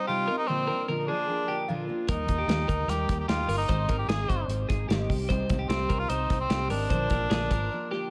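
A straight 4/4 pulse at 149 BPM drives this bright, breezy jangly indie pop excerpt, in which a close-miked, up-front cor anglais carries the melody over full-bodied fingerpicked steel-string acoustic guitar and twangy, compressed twelve-string electric guitar arpeggios with a warbly pitch drift, all three bathed in tape echo, until at 2.1 s a round, foam-muted fingered electric bass and a smooth, dark-toned modern drum kit of hi-hat, tight kick and snare, the kit also echoed, join before a brief break at 7.7 s, the echo-heavy mix sitting in light small-room reverb over chords moving from Bb through Eb, Ab and Cm back to Bb.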